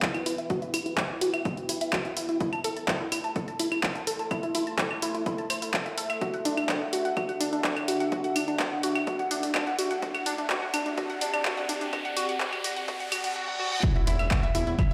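Driving and cinematic, this melodic techno excerpt runs at 126 BPM in E minor, moving from Emadd9 through Am and D before returning to Emadd9 at the drop. An up-front analog pluck spins arpeggios from D4 to E6 throughout, its bright, round tone thickened with chorus and delay, pumping against the kick and shaped by a filter sweep across the build-up to 13.8 seconds. Beneath it, a deep, moody pad with a slow attack and long release adds a dark, detuned haze, while a punchy, tape-warm kick and an analog drum machine supply claves, handclaps and hi-hat. A riser enters at 7.4 seconds, joined by a reverse cymbal that leads into an impact at the drop, where a very quiet, gritty sampler-style kit adds ride cymbal and snare, and a fat, nasal, saturated bass lands on E1 moments later. The mix sits in a wet hall reverb, sounding as if played on a big system in a bare room.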